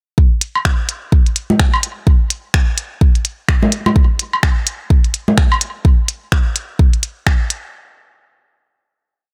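A four-on-the-floor deep kick drives this cool, quirky techno groove at 127 BPM in 4/4, with a 16th-note swing of 60% and a programmed backbeat of finger snaps and clicky closed hi-hats joining at 0.4 seconds. Low woodblock and conga clicks and blips in cross rhythm, tape-warm and carrying delay, weave through the pattern until 5.6 seconds. The kick sits loudest and every part is up front in a dry, close mix over this short, percussion-only piece.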